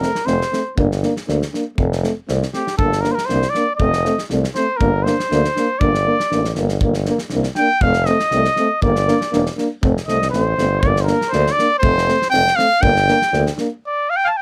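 Under light reverb and a faint vinyl crackle, this bittersweet, virtuosic Balkan brass band excerpt moves at 119 BPM in a lightly swung 2/4 in G minor, with a mellow, up-front trumpet soloing over the alternating F and G minor harmony until 14.4 seconds, a dark euphonium in the background and a smooth-topped trombone with light vibrato filling out the accompaniment, a clear tuba carrying the bass up front, and an acoustic small-room drum kit of punchy kick and medium-tuned snare, before the rest of the band drops out just before 13.8 seconds.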